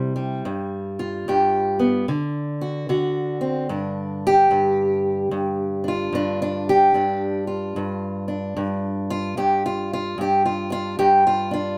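A fingerpicked acoustic archtop guitar sits up front, alone throughout this short, soulful and rollicking excerpt of acoustic country blues at 74 BPM with a swung feel, moving through G7 and D7 before landing on G5 at 3.7 seconds in a studio room with moderate reverb.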